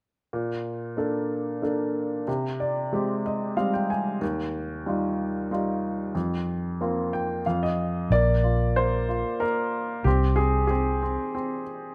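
A clear upright piano opens this short fragment of a tender, nostalgic acoustic folk-pop ballad in Bb major, moving at 93 BPM in a straight 3/4. The piano carries the melody across a broad range, its woody tone and long sustain sitting up front with audible action noise that lends an intimate, polished closeness. Its harmony drifts through Bbmaj7, Abmaj7/C, Ebadd9 and Fsus4, with short piano fills decorating the phrases before the chords briefly fall away while a fill carries on. At 8.1 seconds a vintage electric bass enters beneath the piano as the second section begins, its foam-muted, round and dark amped sound holding low notes until 11.2 seconds while the chords settle on Bb and Ab/C. A light reverb gives the recording a gentle sense of space around these two instruments.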